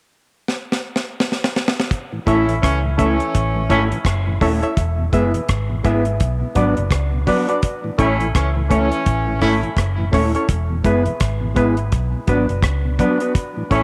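Roots reggae in A major at 84 BPM, with a warm, sunny mood and a lilting swing on the sixteenths, heard as a short passage cut from a longer piece. A dry, up-front drum kit with a high-tuned snare and tight kick opens with a fill at 0.5 seconds. The organ slips in at 2.1 seconds, and at 2.3 seconds the rest of the band arrives together over chords moving through A, E and Bm. The foam-muted electric bass sits forward, round and punchy, while a punchy, present horn section carries a second line with light vibrato and tape echo. A dark, clean fingered guitar, also touched by tape echo, and a very quiet, mellow tonewheel organ with chorus vibrato fill out the accompaniment. A barky, reedy electric piano adds lightly overdriven stabs with fast tremolo, and the whole mix sits in a moderate spring reverb.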